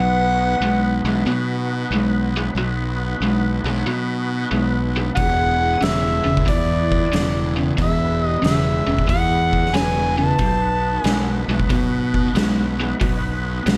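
Blues rock in a power-trio and southern rock vein, this swaggering, gritty excerpt moves at 92 BPM in 4/4 with a swung eighth-note feel in B major, shifting from B to E at 5.2 seconds and back to B at 10.4. A double-tracked, picked electric guitar drives the riff throughout, while a fuzz-laden fingered electric bass sits punchy and up front beneath it. An overdriven tonewheel organ holds thick sustained chords, its slow rotary speaker, chorus vibrato and key click adding a gritty churn. A mellow harmonica carries the melody up front with light vibrato, a smooth top and a touch of overdrive, shadowed in the background by an airy, clay bass ocarina with rolled-off highs playing a second line; both sound briefly at the start, then return at 5.2 seconds. That is also when an oversized, low-tuned drum kit enters with a fat snare, boomy kick and hi-hat, sounding dark and saturated in a bright stone room, all under light reverb.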